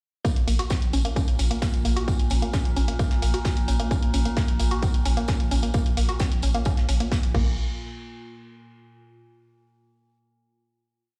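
A woody, wave-folded pluck opens this driving peak-time techno piece at 0.2 s, its short, mellow notes cycling through a 12-step sequence that drifts against the bar, colored by chorus, digital delay and sidechain pumping. Entering together with it, a heavy, layered electronic kick holds a four-on-the-floor pulse, while a punchy analog drum machine adds closed and half-open hats, crash cymbals and a programmed backbeat, its hats and cymbals pumping to the kick. An eerie, nasal FM drone settles on a single sustained low note from 0.7 s, metallic and inharmonic, swimming in chorus and its own reverb. A round sine sub bass rumbles between the kicks with overdrive and a low-pass filter, and a soft brush kit sits in the background with a high-passed, looped breakbeat of snare, hi-hat and tambourine. The relentless, industrial groove runs to 7.6 s before a final hit rings out to 9.4 s, heard through a big sound system in a bare stone room.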